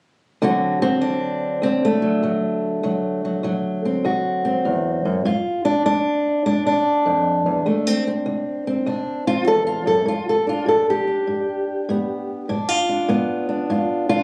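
A fingerpicked old ladder-braced acoustic guitar carries this short acoustic country blues fragment alone, playing from 0.4 to 14.2 seconds. Its tone is dark, woody and boxy, with the character of old strings, and it sits up front in the mix. The mood is swaggering yet laid-back, moving at 99 BPM in 4/4 with a swung eighth-note feel in D mixolydian. The harmony moves from D7 through G5 and a D7 voicing before landing on G7 around 10.1 seconds. Captured on a phone in a small room, the sound carries moderate reverb with a club-like ambience and some compression, and the clip is cut from a longer piece.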